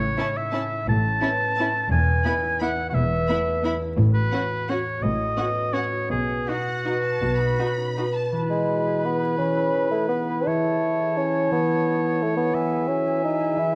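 A clear oboe sits up front through this short orchestral ballroom waltz in E major, its light vibrato carrying a second line above ringing, fingerpicked concert harp arpeggios. The music is festive and sweeping, in 3/4 with a rubato feel that moves between 153 and 189 BPM, tuned slightly low to A4 = 437 Hz. In the opening phrase, rich bowed strings with vibrato fill the texture. A chamber violin section carries the focused melody above a smooth second violin line, violas sit in the background, and a lush, distant cello and double bass section anchors the bass until 7.5 s. At 8.3 s the phrase starts over with woodwinds: a dark clarinet and an airy, mellow silver flute join the oboe, and from 8.5 s a punchy bassoon adds accompaniment up front. Light reverb, close and detailed microphones, and vinyl crackle shape the sound.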